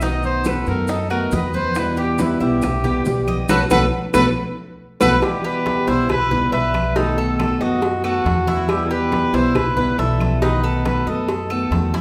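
Cuban son and guajira in E harmonic minor at 139 BPM, this danceable cut from a longer piece puts a punchy, vibrato-rich, distant-sounding trumpet solo up front over bright, full-bodied picked steel-string acoustic guitar, metallic double-string arpeggios on the Cuban tres and woody pizzicato upright bass, while round, low-tuned bongos and cowbell, ringing congas, grainy maracas that stop at 5.1 seconds and vintage, band-limited claves sit in the background, with a band accent from 3.5 seconds and a drum fill at 5.0 seconds leading into a warm B7 and Em progression, all set in a wet recital-hall reverb.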